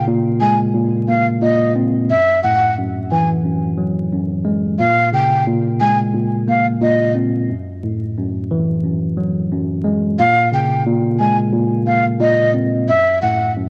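A 4/4 hip hop groove at 89 BPM swings its sixteenths at 58%, setting a gritty, dark mood in this short excerpt cut from a longer piece. A worn, slightly out-of-tune tine electric piano carries the accompaniment from 0.0 to 13.7 seconds, clean, direct and up front in its low-to-middle range, filtered at both ends. Over it, a breathy silver concert flute plays the melody between Eb5 and Ab5 with a straight, tongued, somewhat unsteady tone, close-miked and given a cassette tape coloring along with its own filtering. The harmony moves between Bbm9 and Gbm9 before closing on Gbm7, with a break from 7.5 to 10.2 seconds. A light, small-room reverb and the vinyl crackle of a home cassette recording give the whole track a dusty, lo-fi feel, tuned slightly flat to A4 = 439 Hz.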